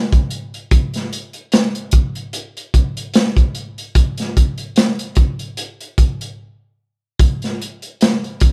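A gritty, saturated breakbeat kit of hi-hat, tight kick and medium-tuned snare sits up front with a rolled-off top in this sultry, late-night R&B fragment at 74 BPM, swinging on the sixteenths in a live-room sound with light reverb, pausing for a break at 6.4 seconds before a new section at 7.2 seconds.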